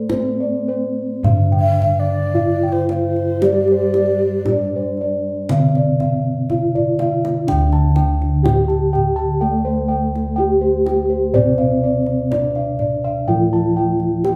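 A ringing bronze metallophone carries the serene, ceremonial melody of this Javanese gamelan excerpt in D slendro at a slow 52-62 BPM, its paired tuning producing shimmering beats over a lower metallophone accompaniment, round bossed gongs in the bass and arpeggios, a tight kendang that plays a drum fill from 6.7 to 7.5 s, and a breathy, unsteady bamboo xiao second line that appears briefly from 1.6 to 5.0 s, all played live in one room and bathed in a large, wet reverb.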